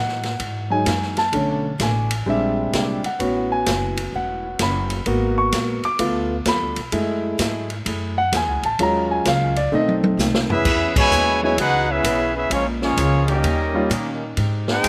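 A swinging 4/4 groove at 129 BPM drives this brassy, joyful stretch of big band jazz, cut from a longer piece and played in a dry open-air setting with little reverb. For the first 10.6 seconds the warm concert grand piano takes the lead in a solo, its deep bass and up-front presence carrying a rich run of extended chords from Emaj9 onward, with a slapback echo on its tone. Beneath it, a woody pizzicato upright bass and a natural-sounding drum kit with a punchy kick, medium-tuned snare, hi-hat, ride, crash and toms keep the swing moving, while a bright picked parlour acoustic guitar, also carrying slapback echo, sits quietly in the background. A drum fill from 9.7 seconds hands off to the full band, which hits an accent at 10.9 seconds as a clear, smooth-topped trumpet section with a soft attack and slapback echo takes the melody up front, joined by a tight trombone section with light vibrato playing a second line. 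Near the close, another background trombone group adds brief sustained chords as the harmony moves through D#7 toward G#maj7.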